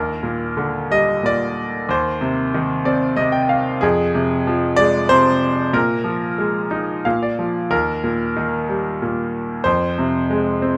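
Hopeful and relaxed, this short classical excerpt cut from a longer piece features a bright, brilliant yet worn grand piano, up front and present in a moderate recital hall reverb, playing a lyrical solo in Eb major at 93 BPM in a rubato 3/4, ranging from Eb2 to G5 with brief fills around 2.5 and 6.7 seconds over a progression from Ebmaj7 through Fm and Bb7sus4 back home to Eb.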